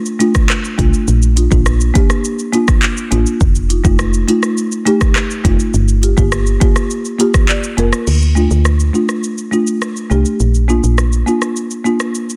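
An electronic afro-pop kit of deep kick, crisp hi-hats, handclaps, rim clicks, shaker and crash, gritty with 12-bit sampler character and a softly clipped snare, opens this bouncy, hypnotic dancehall cut at 103 BPM in D phrygian, joined at once by a dry, rustic soft-mallet marimba pumping with sidechain and then by a round, dark FM bass with a fast, decaying attack, until a marimba fill at 7.2 seconds leads into a passage where the kick drops out from 8.1 seconds, the whole set in digital ambience under a dense, heavily limited modern master.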